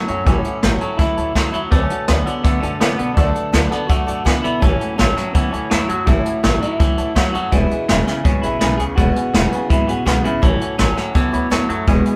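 Rockabilly at 165 BPM in A major with a retro, upbeat drive, this excerpt sets a slightly broken-up electric guitar melody through a small old amp over a clean, compressed twangy electric guitar riff with phaser, a woody, thumpy pizzicato upright bass on gut strings, a roomy, distant brush drum kit with a boomy kick and rolled-off top, and, in the background, a picked steel-string acoustic guitar and a detuned, jangly honky-tonk upright piano, all played live in one room with moderate reverb over sixth chords on A, D and E.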